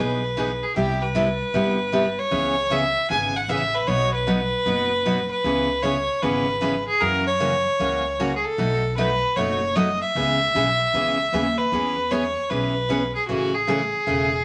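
Western swing country at 153 BPM, this cheerful, playful fragment of a longer piece rolls along in 4/4 with a lilting swung eighth-note feel. A clear, earthy fiddle carries the melody up front, bowed by a single player with light vibrato. A bright, full-bodied picked acoustic guitar also sits up front in accompaniment, its strings giving off finger squeak. Underneath, a pizzicato upright bass supplies a woody, thumpy low end. The harmony moves through jazzy colors such as Emaj7, C#m7, F#7 and B7 before settling on Amaj7 near 13.3 seconds. A moderate studio reverb and a layer of vinyl crackle, with the top end rolled off, lend the sound an aged, dance-hall glow.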